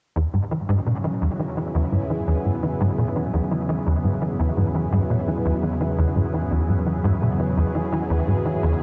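A straight 4/4 pulse drives this luminous, expansive stretch of ambient space music, with a punchy, nasal sequencer bass riff starting at 0.2 s and carried by ensemble chorus and tape echo. A thick, detuned unison pad arrives at 0.6 s with bright sustained chords treated by chorus and phaser, and a vintage, warbling analog drone with pulse-width modulation settles into the background from 1.5 s. Everything rests on a single E chord, cut from a longer piece and bathed in a vast cathedral reverb.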